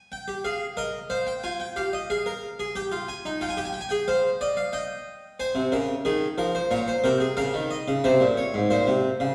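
Serious and solemn, this short passage cut from a longer piece is a baroque-style three-part fugue for solo harpsichord in F minor, moving at a steady 91 BPM in a straight 4/4. The harpsichord is in the Italian style with two sets of strings, and its sound is plucked, full and dry, captured up close and placed up front. Around it, a recital hall adds a reverberant bloom that lasts about 1.4 seconds, giving a sense of the room heard from further back. The single instrument plays throughout the 9.3 seconds, spanning Ab2 to Bb5 and tuned slightly below modern pitch, at A4 = 437 Hz. The harmony moves through Cm/G, Fm11, Ebadd11, Cm, Fm/C and Gdim/Bb before arriving on C7 at 8.1 seconds, which leaves the phrase poised on the dominant.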